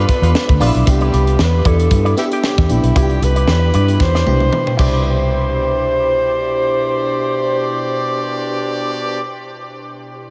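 Soaked in a huge, dreamy reverb, this glossy, urban 1980s jazz-funk pop excerpt at 115 BPM in C major opens on a band accent over G7 moving to Cmaj9, with a breathy, subtoned alto saxophone carrying the up-front melody through a diffuse ambient delay, a loose horn section adding a second line that drops out and returns at 4.8 s, a glassy FM electric piano with phaser and lush chorus, a dark envelope-filtered guitar riff tucked in the background, a round, punchy muted fingered bass, and a tight funk drum kit with a high-tuned snare that plays a fill from 4.0 s and stops at 4.9 s.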